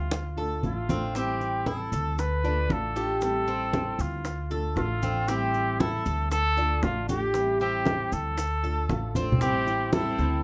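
A breathy, whispered trumpet carries an intimate melody from the start over fingerpicked nylon-string guitar and a woody, thumpy pizzicato upright bass, in a nostalgic, danceable Cuban son and guajira groove at 116 BPM in A minor, cut from a longer piece. Congas with soft hands, hard-handed round bongos and grainy maracas fill out the percussion with a drum fill near the top, and a metallic, double-strung Cuban tres enters with picked arpeggios at 0.4 seconds as the harmony alternates between Dm and Am7. At 9.4 seconds a distant, reedy bowed violin section adds a second line in the background, all set in a dark production with a modest small-room reverb.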